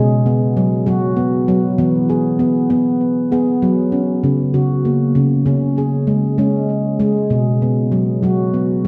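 In a straight 6/8 at 65 BPM, this gentle, hypnotic world meditation features a solo handpan, ringing and bright with sharp finger strokes on stainless steel, close-miked and up front with tape echo, moving through B5, E, F#, C#5 and back to B5 in a dark production bathed in scoring-stage reverb, tuned to A4 = 441 Hz and cut from a longer piece.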